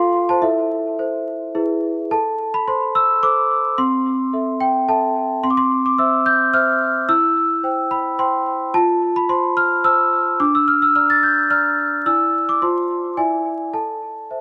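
In a straight 3/4 at 108 BPM, this eerie, wistful classical lullaby in A minor, tuned to A4 = 439 Hz, is carried by a large celesta playing solo from 0.0 to 14.4 s across a range from C4 to A6, its bell-like, delicate tone struck by hard felt hammers and sitting up front with a ringing, mid-forward presence touched by tape echo. After a brief opening, a new passage begins at 2.1 s and moves from A minor through C and F to a Bb/D, then sways between E7 and F before settling on A minor. A moderate spring reverb and a small room surround the sound, with a bed of vinyl crackle, in this fragment cut from a longer piece.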